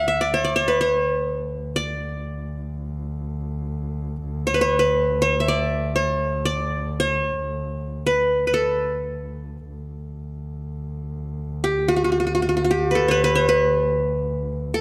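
Close, detailed microphones and light reverb frame this festive, passionate 14.8-second excerpt of Arabic maqam ensemble music in free time and D maqam rast, where an up-front acoustic qanun, bright-edged and played with fingerpicks on its triple strings, carries the melody throughout over a single bowed double bass holding a warm, expressive D2 drone with vibrato, portamento and a soft attack.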